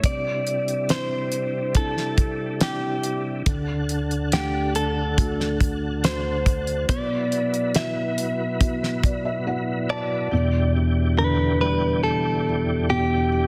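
A clean electric guitar, recorded direct and compressed with a scooped, picked tone and a touch of delay, carries the melody up front in this emotional, melancholic pop ballad in E minor, tuned to A4 = 437 Hz. Beneath it, a felt-muted upright piano gives soft, dark, intimate accompaniment, its thick felt and audible action noise close at hand, and it plays a fill from 8.6 to 10.3 seconds. A tonewheel organ holds smooth, clean sustained chords with chorus vibrato and a fast rotary speaker. A damped 70s drum kit, dry and up front with a fat snare, tight kick and hi-hat, keeps a straight 4/4 at 70 BPM until it stops at 9.2 seconds. The harmony moves through Cadd9, D and Bsus4 before settling on Em7 at 10.3 seconds, where a new section begins. Light reverb and studio ambience surround this brief cut from a longer piece, finished with a dense, heavily limited modern master.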